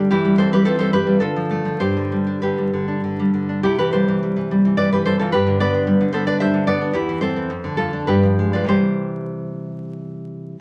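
In a 3/4 with a rubato feel, the tempo moves between 91 and 112 BPM, giving this short romantic piece for solo classical guitar a gently unhurried sway. The nylon-string guitar plays alone for the full 10.6 seconds, fingerpicked up front with a full-bodied, warm acoustic tone that spans from low E2 up to E5. Rooted in C major, the harmony circles through C/E, Dm and G before closing on a cadence of Dm7/F and G7b9 that resolves to C at 8.7 seconds. The mood is nostalgic and warm, helped by a wet studio reverb that lends the notes a soft halo. Faint vinyl crackle and lossy compression artefacts give the sound a worn, old-record patina, and the clip is cut from a longer piece.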